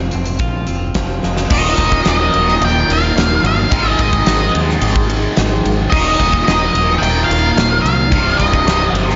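An octave-fuzz lead guitar carries a dark, distorted melody from 1.5 s in this angsty quiet-loud alternative rock excerpt at 109 BPM, arriving alongside a biting, double-tracked overdriven guitar riff with phaser and slapback echo, after a twangy, clean electric guitar opens with echoed arpeggios over a growling, overdriven fingered bass and a huge arena drum kit with a punchy kick and fat snare, whose fill at 1.2 s leads into the next passage, all set in a big arena sound with moderate stage reverb over chords moving from Fm through Ebsus2 and Ab5 to Cm.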